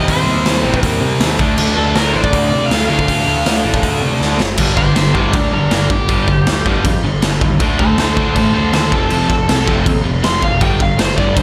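A dry mix with a gritty, saturated garage drum kit up front, its punchy kick and medium-tuned snare ringing in a bright stone room, drives this angry, raw punk rock excerpt at 159 BPM in straight 4/4. Two bright, distorted picked guitars sit in the background with their riffs while a fuzzy, punchy picked bass carries the low end, moving from Cm to Dm. After a drum fill at 4.2 seconds, the overdriven lead guitar takes a solo over mostly power chords from 4.6 seconds until the cut at 11.4 seconds.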